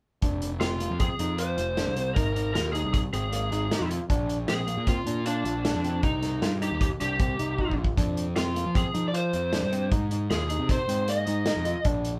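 A moderate studio ambience captures a band playing live in one room on this tense, brooding progressive instrumental excerpt in 5/4. A lo-fi, overdriven lead guitar carries the melody over bright, barky electric piano arpeggios, a fuzz-laden picked bass that sits punchy and up front, and a vintage acoustic kit with a pumping small-room character and rolled-off top. The drums play a short fill at 7.6 seconds, and the chords move from Fm through Abadd9, Bb and Cm to F5 and Ab.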